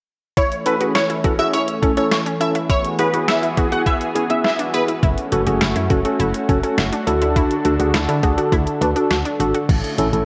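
This wistful yet bright synth-pop excerpt opens with an overdriven, sampler-style drum machine up front, its thumpy kick and medium-tuned snare joined by hi-hat and crash cymbal. A lush, thick unison pad holds sustained chords beneath a funky, punchy polysynth playing a second line with a filter sweep and moving notch, chorus and analog delay, while a round sawtooth pluck arpeggiates in the background. A clean tine electric piano enters just after as accompaniment, sounding as if through its built-in speakers. The polysynth drops out at 4.8 seconds, and at 5.0 seconds a solid FM bass arrives up front, mellow and fast in attack, as the harmony moves from A through Eadd9 to F#m and D before returning to A. The excerpt sits in a moderate concert hall reverb, with the worn, warbling pitch drift of old cassette tape.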